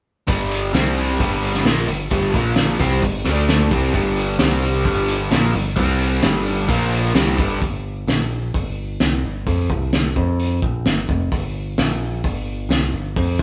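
A cloth-damped, thuddy drum kit with a fat snare and tight kick sits up front in this swaggering, brooding classic rock excerpt at 130 BPM in G minor, alongside two overdriven guitars (a crunchy one bathed in spring reverb and a semi-hollow one treated with phaser) playing a riff over G5, C5, Gm and Bb5 until 7.6 s, after which the bright, direct picked electric bass and the drums carry on through G7sus4 and chordless passages to 13.4 s, the band captured live in one room with moderate reverb.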